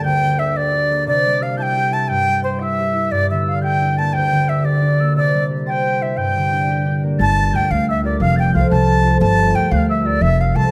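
Celtic folk jig in a straight 6/8, dark yet lively with a wild edge, heard as a short cut from a longer piece. A bright, airy wooden flute carries the melody up front with a crisp attack and straight, expressive tone. Above it, a mellow, hollow wooden whistle adds a distant second line, its pure sound coloured by vibrato and a tongued chiff. A fingerpicked concert harp rings out the accompaniment close to the listener, moving through G minor, Cadd9 and F chords. At 7.2 seconds, as the tune shifts into a new section, a woody, dark pizzicato upright bass joins and plays until 10.6 seconds, all within a light reverb.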